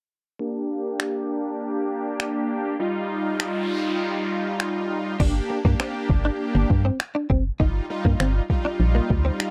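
A dry, close 1970s-style studio sound with light reverb frames this confident, bittersweet dance-pop excerpt in G minor at 100 BPM, where a fat, bold polysynth of detuned sawtooths, bathed in lush chorus, sidechain pumping and a filter sweep, moves between Gm and Ebadd9/G. A smooth, electronic R&B kit of soft kick, finger snaps and crash cymbal enters at 1.0 seconds, its kick muted while a noise sweep fills the bars leading to 5.2 seconds. At that point a hollow, percussive FM bass, dark, organ-like and pumping up front, arrives alongside a clean, compressed guitar riff recorded direct and thickened with ensemble chorus.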